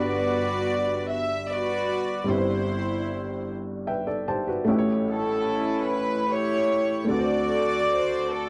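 A soft-attack string section carries the melody from the outset, its bowed sul tasto tone pure and floating, over a woody upright piano whose intimate accompaniment lets the action noise come through. This slow gospel passage in 6/8, reverent and uplifting, moves from Gmaj7 through C/G and A7 to D7, and the piano adds a fill between 3.5 and 4.7 seconds. The sound is dry and close in a 1970s studio manner, touched with light reverb, and the excerpt is cut from a longer piece.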